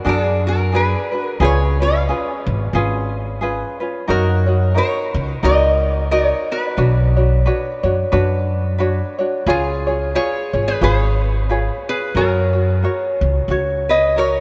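A metallic, nasal lap resonator guitar played slide with fingerpicks carries the melody up front in this relaxed, languid Hawaiian excerpt at 89 BPM in F# major with a swung 4/4 feel, alongside a mellow, light fingerpicked tenor ukulele and a woody, growly pizzicato upright bass on steel strings, all set in a vast, echoing cathedral-like space with a 6.1-second reverb tail.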